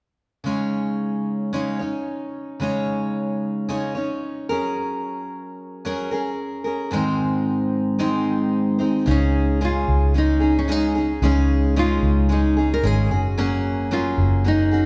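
A spacious hall-like reverb surrounds this carefree, sunny acoustic pop excerpt in Db major at 111 BPM, where a full-bodied, picked steel-string acoustic guitar sits up front from 0.4 seconds, playing through Dbsus2, Gbadd9 and Ab chords. At 9.1 seconds a fingerpicked nylon-string guitar carries the melody with audible finger squeak, joined by a dark, round, foam-muted electric bass that sits up front beneath it. The passage is cut from a longer piece and breaks off at 14.9 seconds.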